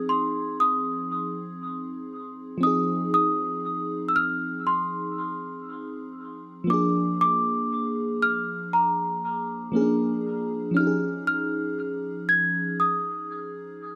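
A bell-like celesta carries the melody high above, its delicate, sweet tone trailed by dub echo, while an FM electric piano layered with a soft pad supplies lush, dreamy chords with a chorus shimmer. This moody, sensual R&B fragment, cut from a longer piece, moves slowly at 59 BPM in F minor, drifting from Fm7 to Bb7/F at 6.7 seconds and Eb9sus4 at 10.8 seconds. Both parts sit up front in an echo-heavy mix with light studio reverb.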